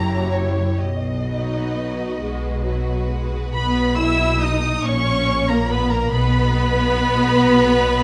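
A slow, serene romantic movement for string orchestra in B major opens with all five sections together, unfolding in a rubato 6/8 at around 42-48 BPM over an F#7b9 chord that gives way to B. The first violins carry the melody with a warm, expressive, close vibrato sound up front; the second violins add a lush second line, the violas supply smooth, distant accompaniment, and the cellos and double basses hold a focused bowed bass, with the basses also sitting forward. A moderate scoring-stage reverb surrounds the ensemble as the harmony moves through Badd11 and A#m at 3.5 and 4.8 seconds, before the chords drop away at 6.1 seconds in this excerpt from a longer piece.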